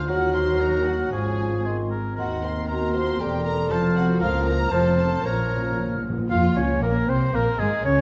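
In a straight, driving 2/4 at 116 BPM, this urgent, dramatic classical-period movement for symphony orchestra pushes forward in Bb minor, cut from a longer piece. A dark violin section carries the melody, bowed sul tasto with light vibrato and a smooth top, while a clear, solo-style oboe, a pure concert flute with straight tone and crisp attack, and a background group of second violins weave secondary lines around it. Beneath them, a mellow, distant bassoon and intimate chamber violas supply accompaniment, a French horn section holds soft-edged sustained chords, and woody double basses join close, gentle cellos on the bass. Timpani with hard mallets and plastic heads add an articulate fill from 5.2 to 6.3 seconds as the harmony settles onto Bb minor. The whole is heard on a scoring stage with moderate reverb and a warm, rounded production that keeps the top end soft.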